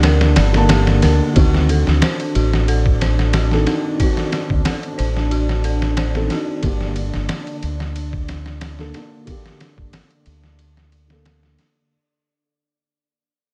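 Brooding, cinematic trip hop cut from a longer piece, where a compressed, pitched-down sampler drum kit with a thumpy kick and ride sits up front beside a round, deep dub fingered bass, while a felt-muted upright piano with audible action noise, harmonic tremolo, 12-bit grit and tape echo plays a boxy accompaniment over a warbling, nostalgic tape-like pad and a breathy wind-like noise texture in the background, an eerie, inharmonic detuned synth bell arpeggiates until 6.7 seconds, and the whole fades out from 1.4 seconds as the harmony moves from Gm to D7b9 and back.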